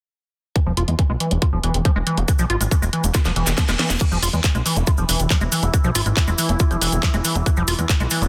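A straight 4/4 pulse at 139 BPM drives this intense psychedelic trance excerpt, with a tight electronic kick and a garage drum kit of cracking snare, hi-hat, handclaps and crash cymbal sitting up front from 0.6 seconds. Underneath, a fat, nasal analog bass built from detuned sawtooth and square waves holds the low end with a tube-saturated filter pluck, while a squelchy, resonant acid bass riff with chorus, sidechain pumping and tape echo circles above it. A grainy cabasa joins in the background at 2.3 seconds, and a drum fill at 3.1 seconds, dusted with a very quiet reverse cymbal and zap, carries the groove into the next section. From 4.0 seconds a filter sweep works through the acid line, and an overtone-sweeping drone of sawtooth and sine tones swells in slowly at 4.7 seconds, its chords breathing with sidechain pumping, chorus and built-in reverb. The mix is dense and heavily limited, set in light digital ambience.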